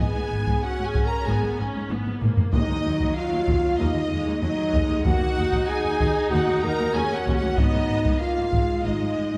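Mellow French horns sit up front with sustained chords in this dark, heroic cinematic score, cut from a longer piece and moving at 95 BPM in Eb minor. Beneath and around them are bowed, vibrato strings: a warm violin melody and a rich second violin line high above, clear violas in the middle, and lush cellos and double basses holding the bass in the background. Heavy-stick taiko drums enter at 0.5 seconds with a fill near 1.9 seconds, hard-mallet timpani on Eb3 arrive at 2.5 seconds, the harmony moves between Abm and Ebm, and a wet scoring-stage reverb places the orchestra further back in the room.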